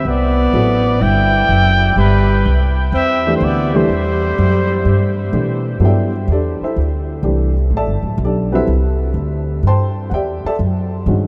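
Jazz at 125 BPM in a swung 4/4, hypnotic and spiritual and cut from a longer piece: a warm, vintage-toned trumpet with vibrato carries the melody over a breathy, whispered alto saxophone second line until 5.3 s, while a growly, woody pizzicato upright bass and a dark, mellow baby grand piano with audible action noise continue from a Cmaj9 into a D9sus4 at 5.8 s, where the music settles in D mixolydian, the whole recording sitting in a huge ambient reverb that suggests a vast, echoing space.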